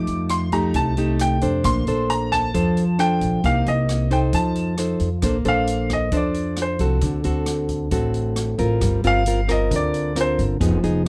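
A clear, up-front grand piano carries the melody in this sunny, romantic bossa nova excerpt in Bb major at 134 BPM, taking a solo from 5.2 seconds as the harmony moves through Bbmaj9, D7 and Gm7. Beneath it, a fingerpicked nylon-string guitar plays classical-style accompaniment, while a woody, thumpy upright bass is plucked low. An open jazz drum kit with a natural studio-room sound and a boomy kick keeps time softly on hi-hat, kick and rim click, all set in light reverb with close, detailed microphones.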